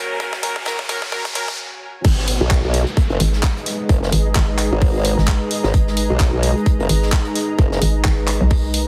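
A hollow, knocking FM bass with overdrive bounces up front from the drop at 2.0 seconds, joined at 2.4 seconds by a formant-swept, tube-saturated wobble bass, in this aggressive, swaggering bass house excerpt in G# minor at 130 BPM with a swung 16th feel. The drop follows a build-up of clear, smooth-topped horn stabs with digital delay, an electronic riser and downlifter, and a drum fill that breaks into a stop at 1.6 seconds. A tight, layered electronic kick drives alongside an overdriven garage kit of claps, hats and crash, a very quiet acoustic kit adds snare and hi-hat, and a deep, detuned analog pad with chorus and phaser and a blurred, evolving granular cloud pad pump under sidechain in a small, heavily compressed, radio-like room.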